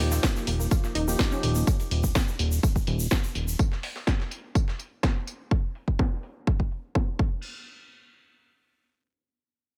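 Progressive house at 125 BPM in 4/4 with an emotional, driving mood, this excerpt opens on an Ebadd9 chord as a lush, background unison pluck plays gritty 12-bit arpeggios beside soft felt-muted upright piano stabs, both pumping with sidechain and trailing delay until 1.6 s. A fat, detuned analog bass sits up front holding Eb1 through 3.6 s, over a punchy layered kick and a house kit with a cracking snare, alongside a gritty sampler-style breakbeat kit and a grainy, distant egg shaker. A filter sweep runs across the drums until 7.4 s, and the dry mix leaves the bass and kick at the front.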